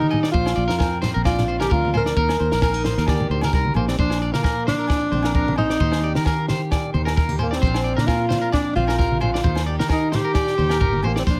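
Highlife guitar band music in Bb major at 132 BPM, carefree and danceable, with a light 16th-note swing over a Bbadd9 to Eb vamp in this excerpt from a longer piece. A breathy, whispered tenor saxophone carries the melody up front with vibrato, scooped notes and plate reverb, over twangy, slightly broken-up electric guitar arpeggios with slapback echo and a round, foam-muted fingered electric bass. A picked steel-string acoustic guitar with finger squeak, low-tuned damped congas, ringing agogo bells and a dry compact cocktail kit with a punchy kick and high-tuned snare fill out a small room with moderate reverb.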